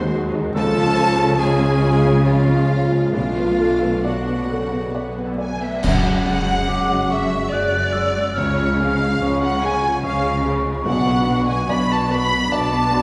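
In a freely breathing, rubato 3/4, this moving, longing cinematic film-score passage sets a lush, vibrato-rich violin section on the melody over a second violin section, with a clear solo clarinet voicing a second line until 5.4 seconds; a felt-muted upright piano with audible action noise and a portamento-tinged viola section supply accompaniment, while a distant, very quiet French horn section holds dark sustained chords, a ringing concert harp plays arpeggios, and a dark double bass section and a warm cello section anchor the bass; cymbal swell, clash cymbals and concert bass drum arrive at 3.2 seconds, an airy, hollow silver flute takes up a second line from 6.7 seconds, and a wet concert hall reverb surrounds the ensemble.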